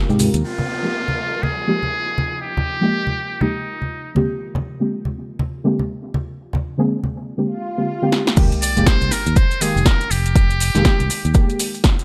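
Deep house with a smooth, deep mood, cut from a longer piece and carried by a steady swung groove. Soft, full-bodied chord stabs with a detuned, dark edge and a filter sweep sit up front from the start, treated with chorus, cassette tape character, tape echo and sidechain pumping, while a moody sawtooth pad with a sub octave and slow attack hovers in the background under chorus and reverb until 7.4 seconds. Low-tuned congas struck with hard hands sound close and thick-skinned through the opening stretch, and a muted trumpet with a buzzy, thin, vintage tone and vibrato plays a solo line with tape echo, moving between Fm11 and Bb13 harmony. Electronic effects build through a swell, and a fill from an overdriven kit at 8.1 seconds leads into the drop at 8.4 seconds. There an overdriven, layered kick arrives up front alongside the kit's punchy snare, metallic hats and crash, fingered electric bass returns with sidechain pumping, grainy maracas sit in the background, and the trumpet comes back over the groove. 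A light digital ambience frames the whole mix.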